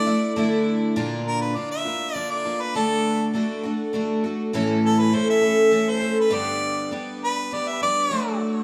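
A clear, punchy harmonica with digital delay takes a pop-style solo from 1.0 seconds over a bright, shimmering, octave-doubled twelve-string acoustic guitar picking chords from Dsus2 through Bb, D, A and G to D/F#, giving this jangly, hopeful rock excerpt in 3/4 at 101 BPM in D major an up-front, rough home-demo feel with light reverb and studio ambience.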